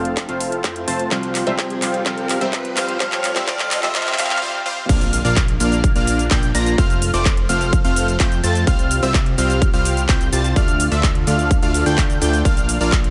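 A dark, fingerpicked steel-string acoustic guitar with finger squeak and tape echo opens this triumphant, uplifting festival progressive house piece at 127 BPM in F major. It plays over a lush, phased supersaw pad in the background, thick, dark high unison lead arpeggios colored by cassette tape, a punchy detuned supersaw stab riff and a fat analog bass, all of them pumping to the sidechain while filter sweeps and a drum fill drive the build-up. A very quiet riser swells from early on. The guitar drops out at 4.4 s for a short break, and at 4.9 s the drop lands on the riser's impact as the pad, lead, stab and bass ride an F, Csus4, Dm, Bb progression. Throughout, a big-room dance kit of metallic hats, handclaps, shaker and crash sits under an up-front, punchy electronic kick, all set in light reverb.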